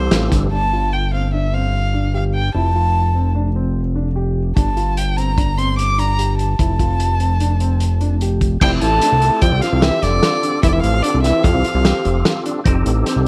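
Set in light reverb, this driving, tense progressive instrumental excerpt in 5/4 at 148 BPM rides a fat, saturated analog bass and a muffled, lo-fi vintage drum kit that comes in fully at 4.6 seconds, while an expressive, nasal violin carries the melody with vibrato and portamento over mellow grand piano arpeggios in the background, and at 8.6 seconds a percussive tonewheel organ with key click and fast rotary speaker returns from its brief opening appearance alongside a soft-edged trombone second line touched by tape echo.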